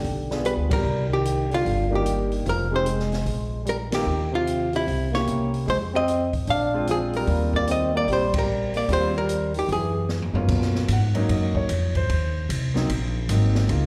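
Sophisticated small-group swing and bop jazz at 150 BPM in Eb major, heard live through a venue's PA with recital-hall reverb, in which a dark, clean, hollow-body archtop guitar carries the melody over a breathy, mellow trombone second line with scooped notes, both touched with slapback echo and both stopping at 10.3 seconds, while a woody pizzicato upright bass, a baby grand piano with slapback echo, and an open drum kit with dark cymbals, a high-tuned snare and a boomy kick drive on through band accents and a drum fill from 10.1 seconds into the closing section.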